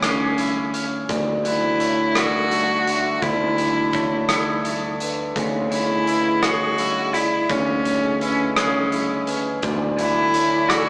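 A clear, earthy cello sits up front, carrying a bowed melody with light vibrato and an airy tone over a slow 6/8 post-rock pulse at 56 BPM that feels soaring and cinematic, cut from a longer piece. Beneath it, a twangy, clean electric guitar plays fingered arpeggios in the background, an overdriven, round picked bass holds a dark low D, and a big-room rock kit of hi-hat, rim click and punchy kick drives the music. Bright, metallic vibraphone arpeggios from hard mallets join at 1.1 seconds, and a reedy, breathing pedal harmonium adds mellow sustained chords from 5.4 seconds, all moving between C#m/D and Dsus2 in a wet room ambience with a small-speaker sound, as if the band were playing live together.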